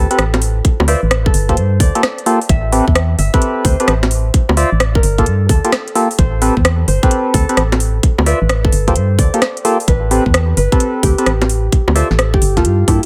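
A thumb-plucked concert harp melody with digital delay, nasal, chorused organ stabs and a dark, hollow FM bass open this skippy, soulful two-step UK garage excerpt in A minor at 130 BPM, with a swung garage kit of cracking snare, metallic hats, rim clicks and bongos arriving at 0.1 seconds and a tight electronic kick joining at 0.6 seconds, all riding a looping Am9, Dm9 and Gm9 progression.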